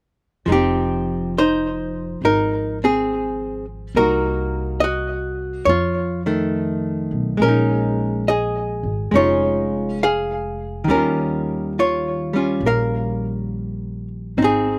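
Dry, roomless outdoor sound frames this melancholic, wistful swung jazz ballad fragment, where a dark, clean, compressed hollow-body archtop guitar sits up front with slapback echo, picking out accompaniment over Fm9, Cm7b5, F7b13, Bbm7 and Eb9, while a woody, growly pizzicato upright bass on steel strings plays the bass line beneath it from 0.5 to 14.8 seconds.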